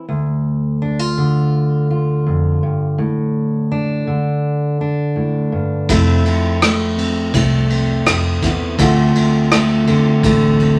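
A full-bodied, fingerpicked jumbo steel-string acoustic guitar sits up front in this short excerpt of an intimate, heartbroken acoustic folk-pop ballad in D minor, moving at a slow 83 BPM in a straight 4/4. The guitar plays alone at first, carrying the harmony from Dm to Asus4. At 5.9 seconds the chords shift to Fmaj7 and then Dm7, and a vintage muted fingered electric bass joins with a dark, round, foam-muted tone. A soft brush drum kit enters at the same moment, heard as distant and roomy, with a punchy kick, ride cymbal and rim click under a rolled-off top. A wet studio reverb with a short 0.7-second tail gives the whole arrangement a tender sense of space.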